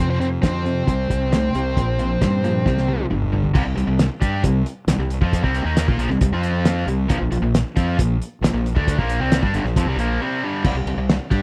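A cloth-damped, thuddy drum kit sits up front in this confident, driving classic rock excerpt at 135 BPM, its fat snare, tight kick and dark cymbals sounding muffled, lo-fi and gritty from a small room, with a fill at 2.7 seconds. A bright, double-tracked overdriven guitar riff and a fuzzy fingered bass carry the chord changes from the start, while a shadowy octave-fuzz lead guitar with slapback echo plays a brief melody that stops at 3.1 seconds. The dry, close mix has a 1970s studio character, and a short break arrives at 10.2 seconds.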